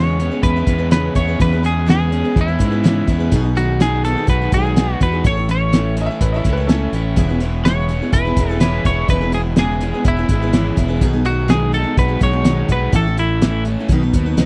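A dry, close 1970s-style studio sound with small room ambience frames this jangly folk rock and heartland rock excerpt in E major at 125 BPM, where a clean, twangy twelve-string electric guitar carries the melody over a full-bodied picked steel-string acoustic guitar in the background, a double-tracked overdriven garage guitar riff, a fingered electric bass set up front, and a muffled, cloth-damped drum kit with a fat snare and tight kick entering at 0.2 seconds, while a slightly detuned, woody upright piano with audible action noise adds a brief second line from 6.0 to 7.5 seconds.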